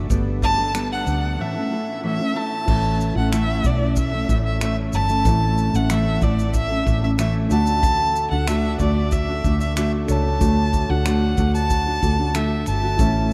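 Bathed in a vast, echoing cathedral reverb, this easy-going, heartfelt acoustic pop piece in D major moves at 93 BPM, with a dark, full-bodied fingerpicked steel-string guitar accompanying up front while a focused, bowed violin with vibrato carries the melody, also up front, over a round, foam-muted vintage electric bass and a distant, roomy unplugged drum kit of tight kick, crash cymbal, finger snaps and shaker, while a reedy electric piano enters in the background at 2.7 s after a brief break that begins at 1.4 s.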